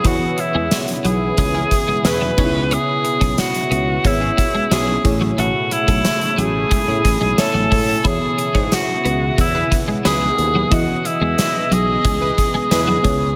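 This 1980s-style pop excerpt moves at 90 BPM in a straight 4/4 in E major, with an uplifting, glossy mood as the chords pass from E6 through C#m7 and Amaj7 back to E6. Up front, a forceful alto saxophone carries the melody with vibrato and scooped notes, its vintage tone washed in delay and shimmer reverb. A gated 80s drum kit drives things with a tight kick, a medium-tuned snare and bright cymbals in an airy stone room, while a growly, punchy fretless bass sustains underneath. Further back sit a warbling FM electric piano treated with phaser, a clean, picked twelve-string guitar riff with ensemble chorus, and an evolving, resonant sawtooth pad that swells slowly under chorus and phaser. A funky, detuned polysynth adds stabs from 1.5 seconds, and a very quiet, jingly tambourine comes in at 0.7 seconds, all under a light reverb that gives the mix a polished sheen.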